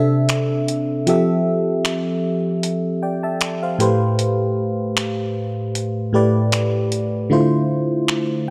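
A glassy, bell-like FM electric piano with chorus provides the accompaniment in this late-night, sensual contemporary R&B excerpt in A minor at 77 BPM with a light 16th-note swing, moving through C6, Fmaj7, Am7 and Dm9 over a gritty, compressed, sampler-style soul kit of finger snaps and hi-hat, whose hi-hats drop out at 7.3 seconds before a short electric piano fill at 8.1 seconds, all set in a dark production with light reverb and digital ambience.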